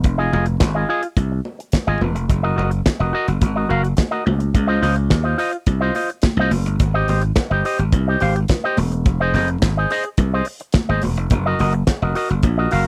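Disco with a glamorous, joyful mood, this short cut from a longer piece moves in a straight 4/4 feel over a looping progression of Fm7, Gb6, Dbmaj9 and Abmaj7. A damped 70s drum kit sits up front, its fat snare and tight kick set against hi-hat, while a growly, punchy slap bass drives the low end with a bright, direct edge. An electric guitar through an envelope filter comes in at 0.1 seconds, playing clean, picked, twangy figures between F4 and F5 with a warm tone. High-tuned congas ring in the background, their band-limited, vintage sound adding color behind the band until 12.6 seconds. The whole piece has a dry, close 1970s-style studio sound with little reverb, keeping the groove intimate and immediate.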